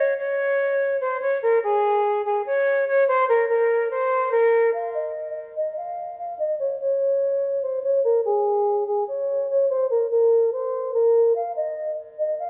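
A half-time feel in 4/4 at 145 BPM gives this brooding, hard-hitting hip hop excerpt, cut from a longer piece, its heavy, unhurried sway. A silver concert flute carries the solo for the full 12.5 seconds, ranging from Ab4 to F5 with an airy, metallic tone, a straight, unwavering sound and a crisp attack, tuned slightly flat to A4 = 437 Hz. The flute passes through a low-pass filter and an analog delay, and a filter sweep on it marks the start of the second section at 4.7 seconds. A moderate echo chamber reverb and small-room ambience surround the flute, while a worn cassette character adds warbling pitch drift and a touch of studio ambience to the whole recording.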